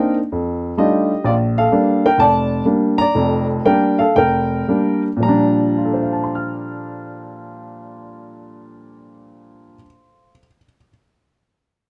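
Solo jazz in Bb major, sophisticated and swinging at 109-129 BPM in 4/4, where a woody, up-front upright piano, tuned to A4 = 437 Hz, spans a broad range from F1 to F6, moving from an F13 to a Bb6 as the tempo slows between 1.2 and 5.2 seconds, all set in a small room with moderate reverb and a dark, warm production in this brief fragment cut from a longer piece.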